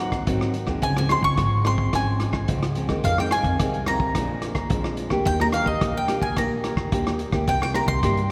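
A straight 4/4 samba and choro groove at 108 BPM drives this lively, bittersweet passage, with a muffled, lo-fi vintage drum kit of hi-hat, tight kick and rim click entering at 0.1 s alongside a pizzicato upright bass with a woody steel-string tone. Up front, a bright bowl-back mandolin picks the melody on its double strings, while a full-bodied, fingerpicked nylon-string guitar with fresh strings and audible finger squeak plays chords moving from Ab7 through Dbmaj7, Fm7, Bb7 and Ebmaj7 to C7. The ensemble sits in a church or concert hall, wrapped in a wet cathedral reverb with a long tail.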